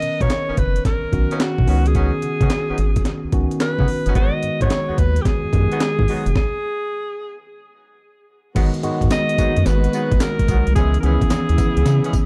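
A bright, forceful alto saxophone carries the melody in this punchy, slick new jack swing excerpt, its pop-style lines full of vibrato and scooped notes and trailed by tape echo. The tune moves at 109 BPM in G# minor, with a swung sixteenth-note feel driven by an up-front, gritty breakbeat kit that sounds sampled and pitched up, with a thumpy kick, medium-tuned snare, handclaps, hi-hat, tambourine and crash cymbal. Underneath, a round, deep analog bass with a fast attack and sustained notes sits prominently, while a clean tine electric piano, heard through its built-in speakers, fills in the chords. A mellow horn section adds quiet jazz-style stabs doubled in octaves, and the harmony moves through Bmaj9, C#9sus4 and G#m7 before a stop from 6.4 to 8.6 seconds. When the second section begins at 8.6 seconds, a very quiet, lush string section joins with woody, bowed sustained chords over G#m7 and C#m7, all set in a dark, warm production with digital ambience.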